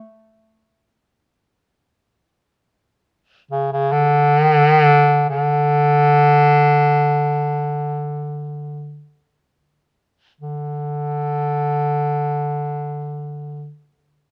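In free time, this austere, calm passage of Japanese traditional music, cut from a longer piece, gradually slows between 2.2 and 10.4 s before a second section arrives. A solo bass clarinet, clear and vintage in tone, plays up front in a classical style, staying between C#3 and D3 until it stops at 13.7 s. Close, detailed microphones and light reverb give the sound an intimate, spare quality.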